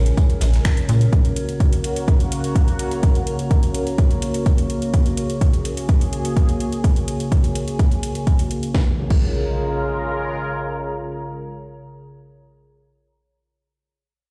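Heard through a big sound system in a bare stone room, this dramatic, driving melodic techno excerpt at 126 BPM in Bb minor moves from Bbm7 to Gb and back under a bright, detuned, resonant sawtooth pad with filter swells and chorus, layered over a dark, warbling, lo-fi tape-like pad. A tight, saturated, wave-folded sequencer bass with a plucky filter and pumping sidechain is up front only until 1.1 s, joined briefly by a polished, airy acoustic kit of hi-hat, snare and tambourine in the background. A dry, punchy, overdriven analog kick and a layered techno kit with a cracking snare, metallic hats, finger snaps and crash drive on until 9.2 s, while an electronic impact lands at 8.7 s as the pads sustain to the close.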